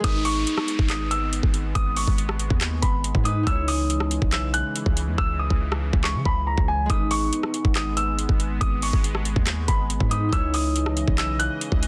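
An up-front trap drum kit anchors this dark, menacing hip hop excerpt, its knocking kick, metallic hi-hats, handclaps and rim clicks sitting in a half-time feel at 140 BPM in G# minor. The hi-hats drop out between 5.2 and 6.9 seconds, while a hard-hitting 808-style bass delivers punchy, heavy sine tones with a noise layer, a fast attack and a decaying tail. A dark, mellow concert grand piano carries the melody high in its range, colored by tape echo, over a fingerpicked concert harp whose acoustic accompaniment rings out beneath it. A sweeping, resonant sawtooth pad holds sustained chords, detuned and bright with chorus, shifting through a filter swell with a slow attack and long release as the harmony moves between G# minor and C# minor add9. An electronic downlifter falls away over the first 3.5 seconds, and the whole excerpt sits in digital ambience with a dense, heavily limited modern master.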